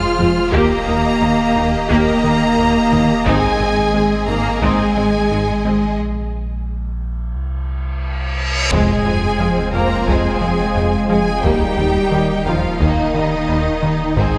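Lush, vibrato-rich violins carry the melody over a softer second violin line, mellow French horn chords, a swirling phased analog pad, a rubbery square-wave bass riff, rich cellos and a deep sub bass, with violas, a very quiet double bass section and hard-stick taiko joining within the first second. This relentless, vast hybrid orchestral and electronic film cue moves at a steady 88 BPM in 4/4 over minor-leaning harmony. After a break at 6.0 seconds, an electronic reverse cymbal and sub drop build to an impact at 8.7 seconds, all set in a wet concert-hall reverb.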